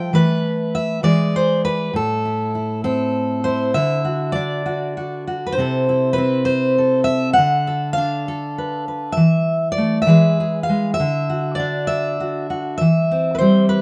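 A lilting 6/8 pulse at 66 beats per minute, counted in dotted quarters, moves with a straight, unhurried feel through this wistful, intimate folk piece in A minor. A lone fingerpicked steel-string acoustic guitar carries everything, ranging from A2 up to G5, its fresh strings giving a warm, full-bodied jumbo tone that sits up front in the sound. The opening phrase settles from Esus4 and E onto A minor, then at 3.7 seconds the music opens into a longer passage that drifts through Dadd9, Amadd9/C and Bm7/D before returning to Esus4 and E. The harmony closes on Dadd9 and C/E, leaving the phrase hanging as the clip ends at 13.8 seconds, clearly cut from a longer piece. A light reverb surrounds the guitar, and the tuning sits a touch low at A4 = 439 Hz.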